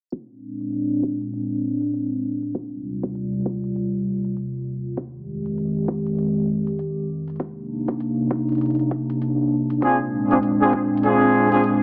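A warbling, detuned tape-like pad up front holds dark, nostalgic chords from Bb9 through Eb69, Fm9 and Cm9 beneath a continuous filter sweep and sidechain pumping, while a punchy, layered electronic kick and a background hi-hat drive this swaggering, funky glitch hop excerpt at 99 BPM with a swung 16th-note feel, until a clear, tight horn section bursts in with gritty 12-bit stabs and dub echo at 9.8 seconds, inside an echo-heavy plate-reverb mix with a low-passed, small-speaker character.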